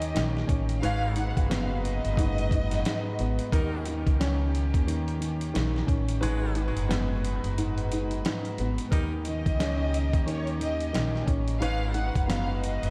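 A swung 89 BPM boom-bap groove in 4/4 anchors this dark, gritty hip-hop fragment, where a dusty, thumpy sampler-style kit (its kick dropping out from 6.2 to 8.9 seconds) and a woody pizzicato upright bass sit up front beneath a mellow vintage grand piano, floating sul tasto studio strings, a lush bowed violin section with tape echo that sings from 0.0 to 3.5 and again from 9.2 seconds, and faint jazz-style saxophone stabs, all bathed in cathedral reverb and vinyl crackle over chords moving between D#7 and G#m7.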